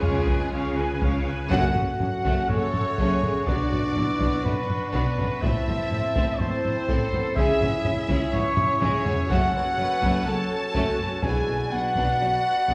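Epic orchestral film score with a dark, epic mood, this excerpt from a longer piece is driven by a close, hard-struck taiko ensemble and a lush bed of bowed strings. A violin section carries the melody with a focused, smooth-topped tone and vibrato, while a second violin line, a rich viola section and a clear cello section fill the background with lush colour. A bright yet distant double bass section anchors the low end, and a mellow French horn section with a vintage, classical character holds sustained chords alongside a tight, punchy woodwind section. An airy, hollow small flute group is barely audible in the opening 1.2 seconds, and at 1.5 seconds a roomy solo trumpet enters with punchy stabs as the full ensemble hits an accent. The taiko adds a fill around 8.6 seconds, and the whole orchestra sits in a spacious scoring-stage reverb that gives the sound a grand, cinematic sweep.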